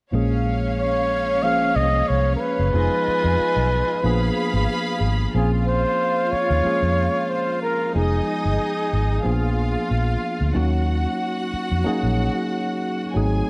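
A lightly swung 92 BPM soul groove in 4/4 sets a silky, bittersweet mood in Bb minor, anchored by a dark, foam-muted vintage fingered electric bass that sits round and punchy up front. A worn, slightly out-of-tune tine electric piano supplies accompaniment through its built-in speakers while a lush bowed string section adds a second line, and a breathy, whispered flugelhorn carries the melody from 0.8 to 9.9 seconds with a soft attack and intimate vibrato. The harmony moves through Bbm9, Fm7b5 and Bb7b9 before settling on Ebm7 at 10.6 seconds, set in a small room with light reverb and cut from a longer piece.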